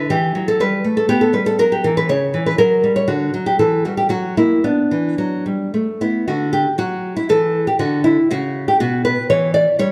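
A classical, baroque-style dance in 3/4 for solo nylon-string guitar, this short excerpt cut from a longer piece moves at 119 BPM in B minor with a rubato feel that keeps it flowing yet grave. The guitar is fingerpicked and sits up front with an intimate, small body, ranging from B2 to D5, and finger squeaks on the strings add a close, human detail. The harmony opens on Emadd11 and F#5, passes through Dadd11 and F#, and settles on Bm at 4.6 seconds to close the first section. A second section begins at 6.3 seconds on Dadd9, returning to Bm before reaching Em at 9.3 seconds as the passage is cut off. A moderate recital hall reverb surrounds the instrument, and the production leans dark, giving the recording a somber, enclosed glow.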